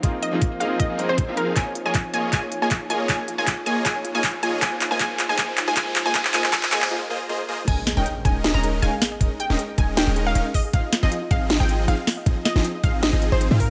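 A half-time future bass groove at 157 BPM in Ab major sets a playful, lush mood, its 16ths carrying a light swing while a knocking, up-front electronic kick and a trap kit with a sharp snare, crisp hats, handclaps and crash cymbal drive the excerpt. It opens with a brilliant baby grand piano that pumps and trails dub echo until 1.4 s, over a very quiet ethereal pad and huge, detuned supersaw chords whose riff moves through a filter sweep across the build-up. A punchy, ring-modulated unison pluck carries the melody with delay from 0.2 s. From 1.6 s a soft, round pluck adds chorused, tape-tinged arpeggios in the background as a drum fill and a faint riser lead to a short break. At 7.7 s the drop lands with an impact, a deep, boomy 808-style bass and a mellow, airy lead arpeggiating with vibrato and portamento, as the chords move from Eb7sus4 back to Ab6, all set in light digital ambience.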